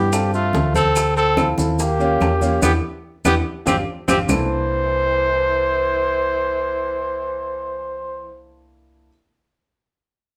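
A breathy, dark trumpet with vibrato and scooped notes carries the melody up front in this lively, sunny Afro-Cuban jazz excerpt, over a vintage-toned tenor saxophone second line, clear, boxy upright piano and a round, punchy hollow-body electric bass, while thick-skinned congas, tight high-tuned bongos, woody claves and grainy maracas play until 4.4 seconds, a band accent lands from 2.6 to 4.3 seconds, and the horns stop at 8.4 seconds, all inside a wet studio reverb.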